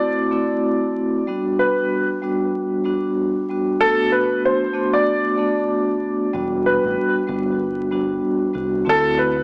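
A dry, gritty recording with vinyl crackle, a small-speaker tone and a light touch of studio reverb frames this short fragment of a longer hip hop piece, gritty and tough in mood. It moves at 95 BPM in 4/4 in E minor, with a 58% swing on the sixteenths. A worn, woody upright piano, slightly detuned and with a long sustain, carries the melody up front between A4 and D5, filtered and trailed by tape echo. Beside it, a vibraphone played with medium mallets adds smooth, metallic, ringing accompaniment with a slow motor vibrato, its tone dark and shaded by cassette tape and filtering. At 6.3 seconds, as the chords shift from Bm7 to Em7, a deep dub fingered electric bass joins, round, punchy and tube-saturated, and plays until the fragment ends at 9.4 seconds. The harmony moves through D7, Gmaj7, Bm7 and Em7 before returning to D7.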